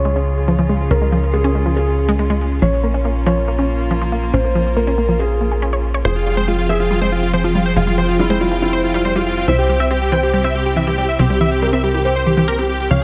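Trance in a euphoric, soaring mood, where a punchy, wave-folded analog bass, a warbling vintage unison pluck arpeggio with delay, sustained bowed chamber string chords under a filter sweep, and a soft, muted upright piano second line with audible action noise and delay all sit in a lush hall reverb before a huge, detuned supersaw lead carrying vibrato and delay takes the melody from 6.0 seconds.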